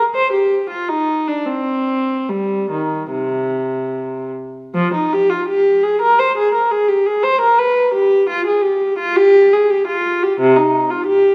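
Classical baroque-style suite movement for unaccompanied viola, flowing and solemn in a free rubato 4/4, where a single up-front bowed viola with a dark, nasal, reedy gut-string tone, light vibrato and a smooth top plays alone throughout this 11.3-second fragment of a longer piece, bathed in the lingering reverb of a recital hall.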